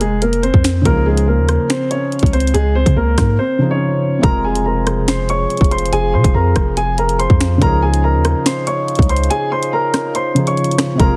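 A heavily compressed, radio-like sound in a small room carries this menacing, cold drill excerpt at 142 BPM in a half-time feel, moving between Fm and Dbadd9. An up-front electronic kit with a hard-clipped kick, sharp snare, bright hats, rim clicks and finger snaps sits over a deep, sine-toned 808 bass with long decaying notes, while a dark baby grand piano with tape echo carries the melody above a soft, felt-muted upright piano accompaniment. After a break at 3.4 seconds, a mellow French horn section enters in the background at 4.2 seconds with tight sustained chords and light vibrato, and the kick drops out at 9.3 seconds.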